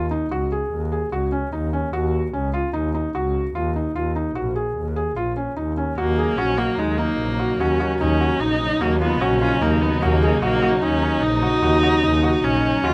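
Urgent and restless, this contemporary chamber piece in 5/4 at 148 BPM in Eb minor opens with a felt-muted upright piano playing soft, intimate arpeggios over a bowed double bass with an airy, reedy gut-string tone, both up front. At 6.0 seconds a clear viola enters with a smooth second line played with vibrato, while a dark chamber string section holds sustained chords in the background. The sound is close and detailed with light reverb, and the section is cut from a longer piece.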